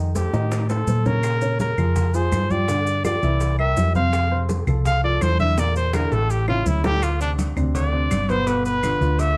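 Lightly reverberant, this short cut from a longer Afro-Cuban jazz piece in F major moves at a lively, sunny 166 BPM in straight 4/4. A warm trumpet sits up front with a solo full of vibrato, scooped notes and a smooth top, over a round, amped hollow-body electric bass and a dark, mellow, intimate baby grand piano with audible action noise and a short sustain. In the background, bright congas and tight high-tuned bongos and cowbell, set distant in a large room, carry the groove alongside close, dry, grainy maracas, with woody claves entering at 1.2 s and drum fills at 0.2 s and 5.9 s.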